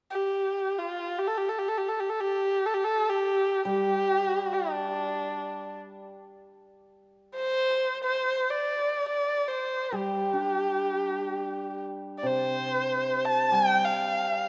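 A dark, woody erhu sings a pastoral, graceful melody in free time in G shang mode, its vibrato and portamento up front from the start, joined at 3.6 seconds by a shimmering, ringing hammered dulcimer accompaniment beneath it, all bathed in a wet concert hall reverb in this Chinese traditional chamber excerpt.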